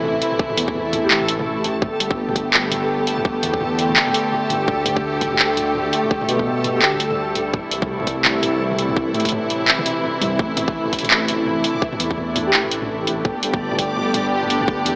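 Half-time drum and bass at 168 BPM in A minor, heavy and cinematic, where dark, bowed strings hold sustained chords with a sidechain pump over a rumbling, detuned saw bass with tube saturation, a tight layered electronic kick and up-front kit with handclaps, toms and metallic hats, a reversed, granular texture entering at 0.2 s, and brief breathy flute-like lead notes in the background at 1.0, 6.8 and 12.5 s, all in a lush hall reverb with a gritty, small-speaker character.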